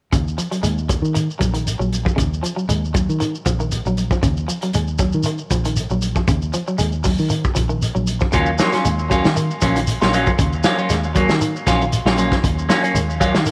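Defiant and driving, this afrobeat groove rides a single Ebm9 chord, with a crunchy, saturated breakbeat kit sitting up front over a round, foam-muted fingered bass and a grainy, close shekere. A twangy electric guitar at the edge of break-up plays low arpeggios through analog chorus from the start, and at 8.3 seconds a brighter, up-front second guitar adds picked stabs colored by phaser and tape echo. Light reverb and a studio ambience frame this cut from a longer piece.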